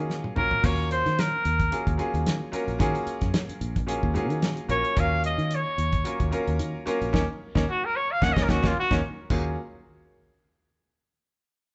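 A 16th-note swing feel at 111 BPM in 4/4 drives this intense, funky electric jazz fusion piece in Eb minor, where a damped 70s drum kit with a fat snare, tight kick and dark cymbals opens with a fill, a foam-muted fingered electric bass and a bright grand piano with short sustain hold an Ebm11 harmony, and an up-front clear trumpet with vintage vibrato solos from 0.4 seconds on through a band accent starting at 7.1 seconds and another drum fill, the band playing live together in a large studio room with moderate reverb.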